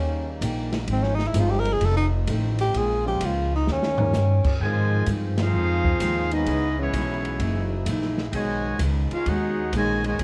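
Big band swing jazz at 129 BPM in Ab major, energetic and swinging, with a firm swung eighth-note feel in this short cut from a longer piece. A mellow tenor saxophone carries the melody up front for the first 4.6 seconds, its soft attack, light vibrato and scooped notes captured close and bathed in plate reverb. Beneath it, a woody pizzicato upright bass sits forward, a picked steel-string acoustic guitar and a bright trombone section holding sustained chords stay in the background, and a grand piano with audible action noise and long sustain adds brief accompaniment. An open jazz drum kit with dark cymbals and a punchy kick enters at 0.4 seconds and plays a fill just before the handoff. From 4.6 seconds a brilliant, tight trumpet section takes the melody with a vintage edge, while a second, warm trombone section, close-miked with vibrato, adds a second line, and the whole band hits an accent at 5.3 seconds. 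The harmony moves through rich sixth, seventh and thirteenth chords, and the production is dark with light reverb.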